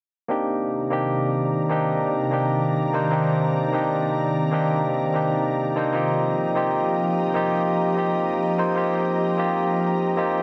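A barky, bright tine electric piano sits up front in this melancholic, dreamy drum and bass excerpt, playing accompaniment from 0.3 seconds through a combo amp, its clean tone shaded by a low-pass filter and trailed by dub echo. At 0.8 seconds an ethereal, airy pad joins with sustained chords, its detuned unison sawtooth and triangle layers swelling in on a slow attack and lingering on a long release, thickened by ensemble chorus and its own reverb. The track moves at 170 BPM in a straight 4/4 feel, resting in C minor with a slightly flat tuning of A4 = 439 Hz. The harmony shifts from Cm9 to F9sus4 at 5.9 seconds, giving the passage a suspended, floating quality. A moderate plate reverb with a 3.5-second decay surrounds the parts, set against a dense, heavily limited modern master.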